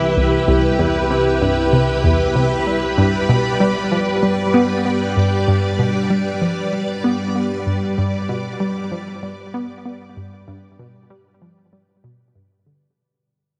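A straight 4/4 pulse at 96 BPM carries this luminous, expansive stretch of sequencer-driven space music in C and G, tuned to A4 = 438 Hz, where a round, detuned analog pluck riff with fast attack, short decay, filter sweep, chorus, cassette tape and delay runs beneath lush, bright string machine chords with sub octave and ensemble chorus up front, while a warbling, pulse-width-modulated analog drone bass sustains in the background, all set in a vast cathedral reverb of 6.6 seconds as the cut from a longer piece fades out from 3.0 seconds to 13.0 seconds.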